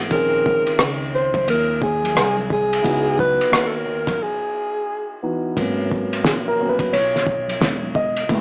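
Nocturnal and mellow, this jazz-hop excerpt sets a breathy, subtoned alto saxophone melody up front over a dark, vintage grand piano with audible action noise, a woody pizzicato upright bass with tube saturation, a muffled, cloth-damped drum kit colored by cassette tape, and very quiet tube shaker and congas, wrapped in vinyl crackle and small-speaker haze, with the saxophone stopping at 5.2 seconds before the piano takes a solo from 5.6 seconds.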